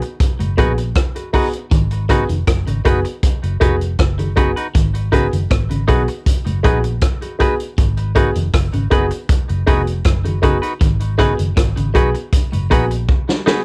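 Hypnotic and laid-back, this roots reggae excerpt at 79 BPM in G# dorian rests on a single G#m7 chord. An up-front vintage drum kit with a punchy kick, medium-tuned snare, rim click, hi-hat and a rolled-off top closes on a fill at 13.1 seconds. A dark, round, foam-muted fingered bass sits below a bright, clean semi-hollow guitar accompaniment with tape echo and plate reverb, alongside woody, slightly detuned upright piano stabs and a slightly broken-up guitar playing phaser-coloured arpeggios in the background, all captured as a home cassette recording with light reverb.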